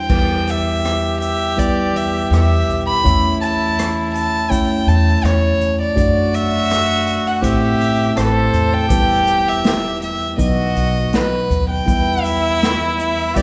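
Acoustic folk-pop ballad in E minor at 82 BPM, reflective and intimate, in which an up-front violin carries a soft, airy sul tasto melody over a mellow, clean tine electric piano, a nasal, metallic stopped French horn traces a second line, a woody pizzicato upright bass sits in the background, and a distant, roomy acoustic kit played with bundle sticks adds dark cymbals and a punchy kick, the whole cut from a longer piece and bathed in a wet church reverb with a 3.1-second decay.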